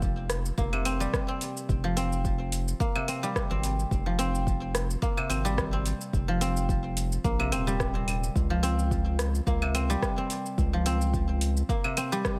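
A silvery, ringing guzheng plucked with fingerpicks opens this meditative organic downtempo excerpt at 108 BPM, spinning arpeggios through a digital delay over a round, dark analog bass and a deep, overdriven electronic kick. A layered deep house kit of claves, hi-hat, rim click and shaker, also overdriven and re-recorded in a small room, adds a lightly swung sixteenth-note feel, while the harmony moves from F5 to Db6 at 8.4 seconds. The bass drops out at 11.6 seconds, leaving the guzheng and drums in a digital ambience until 12.4 seconds.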